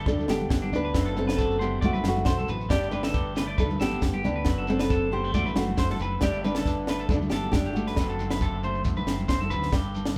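A straight 4/4 pulse at 137 BPM drives this danceable, joyful highlife guitar band excerpt in G major, where an up-front, full-bodied nylon-string guitar carries the fingerpicked melody over a dry, tight funk drum kit with a high-tuned snare, a round, punchy fingered bass, scooped clean electric guitar arpeggios, slightly broken-up electric guitar accompaniment, very quiet damped congas and a grainy shekere in the background, all played live in one room with moderate large studio reverb as Gsus2 and D7/F# alternate.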